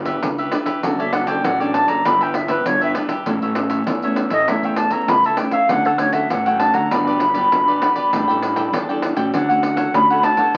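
Crackling like a very old 78 rpm record heard in a small, wet room, this sunny, playful samba and choro fragment in D major moves at 99 BPM, with fresh fingerpicked nylon-string guitar, crisp picked cavaquinho, a jingly pandeiro played with soft hands and a fuzzy, overdriven fingered electric bass underneath, while an airy, close-miked wooden flute with vibrato enters up front at 1.0 s to carry the solo over chords such as Dmaj7, Em7/G and A7sus4.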